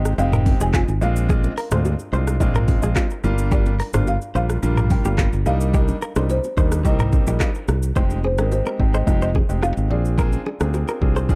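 Sultry and hypnotic, this short afrobeats clip moves at 108 BPM in a straight 4/4, sitting in F dorian over chords that cycle through Fm7, Bb7, Gm7 and Cm7. The groove rests on an up-front afro-pop drum kit with a deep electronic kick, warm hats, handclaps, rim clicks, shaker and toms, joined by a growly, punchy fingered electric bass that holds the low end from F1 to Eb2. A clear concert grand piano supplies intimate accompaniment with audible action noise and long sustain, while a clean, compressed electric guitar, recorded direct, plays a picked riff coloured by lush chorus and delay. Leading from the background, a woody, rustic marimba with medium mallets carries the melody between Bb4 and Ab5, its dry tone touched with delay in a boxy small room. Very quiet congas and bongos add a ringing, saturated layer beneath, and the overall production is dark and warm, with little reverb, shifting to a new section at 8.0 seconds.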